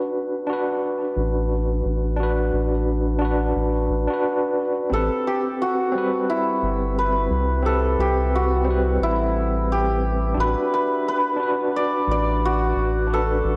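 Smoky and brooding, this trip hop excerpt drifts along at 88 BPM in 4/4 with a lazy sixteenth-note swing, cut from a longer piece. An overdriven tine electric piano opens alone at 0.0 s, barky and gritty through a combo amp, its fast tremolo roughened by vintage 12-bit sampler grit and trailed by tape echo. A round analog bass joins at 1.2 s, deep, dark and sustained, sitting up front beneath the chords. At 4.9 s a hammered santur takes the melody, its bright, shimmering ringing thrown into dub echo as the harmony moves from Bm/A to Am9 before returning to Bm/A at 10.4 s. A lush hall reverb soaks the whole mix, giving it a dreamy depth.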